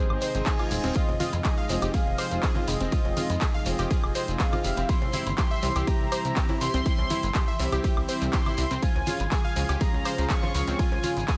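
A punchy, overdriven electronic kick sits up front in a straight four alongside a layered house kit of handclaps, hi-hat, ride cymbal and woodblock, a grainy shekere and background cowbell, congas and woodblock played with hard hands, all setting a driving yet dreamy progressive house groove cut from a longer track. A funky sawtooth-and-square analog bass pumps against the kick, while a bright, detuned analog pluck spins arpeggios with a filter sweep and delay, and a mellow soft supersaw adds delayed stabs over chords moving from Ab through Fm7 and C to Db. Above, a velvety synth lead with vibrato carries the melody, while beneath it an airy, breathy pad holds sustained chords with a moving notch, and an electronic reverse cymbal rises from 0.2 to 1.0 seconds, all set in a digital ambience.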